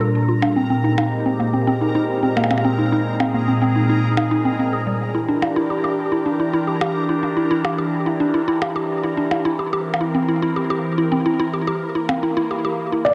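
Glitchy and intricate, this IDM excerpt moves at 108 BPM in a straight 4/4, cut from a longer piece and drenched in a wet spring reverb with digital ambience that gives the mix an echo-heavy feel. A swirling, airy analog pad built from detuned sawtooth waves and a noise layer holds sustained chords up front, its slow attack and long release shaped by phaser and chorus, moving from Bbmaj7 through Abmaj9 and Em7 to C7 at 9.5 seconds. Alongside it, a woody, round mallet-like FM pluck with a sub octave plays arpeggios with chorus and dub echo, and a filter sweep runs across its sound for the whole passage. Deeper in the background, a bubbling stepped-filter texture of resonant sawtooth tones jumps through random filter steps, softened by chorus and its own reverb, while electronic percussion blips enter at 0.4 seconds, trailed by dub echo and carrying a small-room character. Only at 13.0 seconds does a felt-muted upright piano appear, a mellow, intimate and vintage tone with audible action noise, sounding a single D5 up front just as the clip ends.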